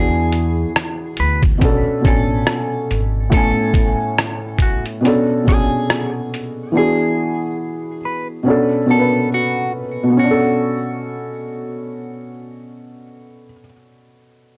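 This melancholic, hazy lo-fi hip hop excerpt opens with a soft, felt-muted upright piano up front, a dark, clean, fingered electric guitar melody, and a woody pizzicato upright bass with tube saturation, all entering together. A moment later a compressed, pitched-down trip hop sampler-style kit joins with a thumpy kick, hi-hat and rim click, muffled yet sitting prominently in the mix over a swung groove. The bass drops out at 3.3 seconds, and the drums stop at 6.6 seconds, leaving the intimate, short-sustained piano chords to carry the harmony beneath the guitar's phased, tape-echoed, filtered line as the music moves through extended chords like E9, Bm7 and Amaj7. After the guitar finishes, the mellow piano plays alone from 12.7 seconds until the excerpt is cut off. The whole recording is dry and gritty, with transformer saturation and cassette tape character giving it a worn, lo-fi haze.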